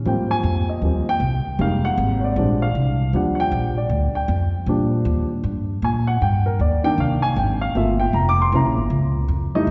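A baby grand piano solos over woody, thumpy gut-string upright bass from the first moment in this brassy, energetic big band swing fragment at 156 BPM, its rich jazz chords moving from Eb major into C minor at 6.2 s, with both instruments up front yet bathed in a long concert hall reverb that places the listener further back in the room with a dulled top end.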